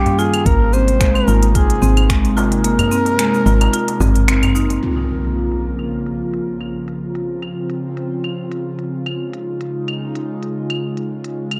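An echo-heavy mix in a small, lightly reverberant room opens this meditative organic downtempo excerpt at 110 BPM in Bb dorian, where a veiled, raspy bucket-muted trumpet melody, a marimba's arpeggios with analog delay and a round, woody FM bass up front ride over an overdriven electronic kick, crisp filtered hats, claves, snaps and shaker, and a deep darbuka in the background with dub echo. A breathy, detuned pad with chorus and sidechain pumping sustains chords throughout. The kick drops out at 2.6 seconds, and after a band accent the trumpet and marimba fall away just before 4.8 seconds. The bass and darbuka stop at 4.8 seconds, when an electronic impact hits and a very quiet quartz singing bowl rings with slow beating over the pad and drum kit to the end.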